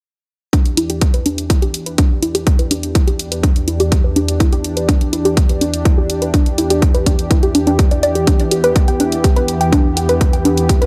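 Progressive house with a driving, emotional mood, this short excerpt from a longer piece sets a soft, round pluck's dark, chorused arpeggios, colored by cassette tape and dub echo and moving under a filter sweep, over a lush, thick, nasal unison pad holding an Em7 chord with its own filter sweep, while a punchy, overdriven kick sits up front beside a layered, overdriven hi-hat, the pad, pluck and hats all carrying sidechain pumping in a light reverb from 0.5 to 10.9 seconds.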